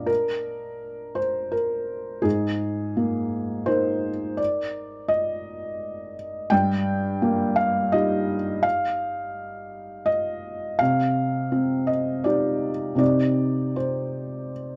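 A gently rubato pulse in 3/4 at around 84 BPM carries this wistful, melancholic neoclassical minimalist piece in C minor, cut from a longer work. A felt-muted upright piano plays alone throughout, soft, mellow and intimate, sitting up front between G2 and G5 as its chords move from Bb through Absus2 and Eb/G to settle on Cm at 10.8 seconds. The dry, close recording captures a small room's ambience with a faint mains hum, giving it an unvarnished 1970s studio character.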